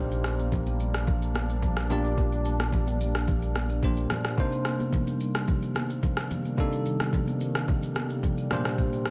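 A bell-like tine electric piano sits up front in this hypnotic, late-night amapiano excerpt, its bright, clean chords with a subtle chorus carrying the accompaniment throughout the nine seconds and moving between Bb6 and Cm7. Beneath it, a deep, moody ambient pad holds sustained chords, its detuned sawtooth layers, sub octave and ring-modulated edges softened by a slow attack, long release, chorus and its own reverb. A thick, saturated sub bass anchors the opening on a low Bb1 with a fast attack before dropping out at 4.1 seconds. An electronic R&B-style kit with a soft kick, rim click and shaker sits up front with a small-room character, while high-tuned, ringing congas played with hard hands stay close and dry in the background. A light reverb gives the whole a gentle sense of space.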